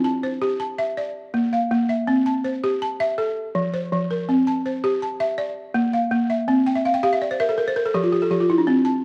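West African traditional music in a hypnotic, joyful 12/8 at 109 BPM in C mixolydian, this short cut from a longer piece features a solo balafon, woody and buzzing under rubber mallets and placed up front, circling through C, Bb and F chords before a fill from 6.7 to 8.7 seconds, all set in a dark production with moderate recital-hall reverb.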